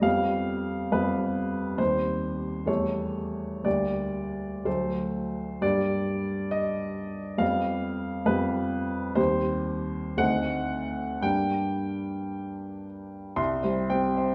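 This is a romantic character piece for solo piano in the classical tradition, stormy and brooding in mood, cut from a longer work. It moves at a slow 55-70 BPM in 2/4, with a free, rubato feel that lets the phrases breathe. A baby grand piano carries the whole passage, spanning C2 to C6 with an open, warm tone, long sustain and an up-front presence. The harmony moves through chords such as G7/F, Cm/Eb, A7/E and D7b9 before settling on Gm at 11.2 seconds and closing on a bare C5 at 13.4 seconds. A wet recital hall reverb wraps the instrument in a sense of space.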